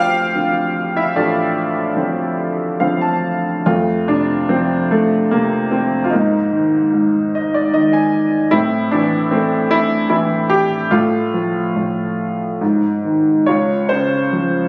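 Tender and calm, this lyrical classical solo piano piece moves in a rubato 3/4 at around 69-76 BPM, opening in D minor on a Dm7 before turning to F major at 3.7 s. A clear, worn, woody upright piano, slightly detuned and up front with long sustain, spans A1 to A5 and adds brief fills, drifting through Absus2, Am, F/A and Ab5 before settling on a Dbmaj7 at 13.5 s. Captured on a phone in the room with light studio reverb, the fragment is cut from a longer piece and ends at 14.7 s.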